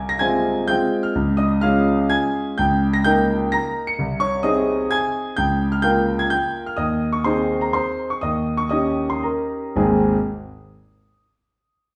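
Graceful and elegant, this brief passage cut from a longer classical piano waltz in Ab major moves in a rubato 3/4 between 107 and 136 BPM, as a solo concert grand with a clear tone, deep bass and an open, up-front presence spans from the deep bass to its high treble, wandering through Fm, Db, Eb7 and Ab harmonies, slowing from 6.1 to 9.8 seconds before settling on Ab as a new phrase begins, with the piano ending at 10.2 seconds, all set in a wet stone room reverb heard from further back in the space.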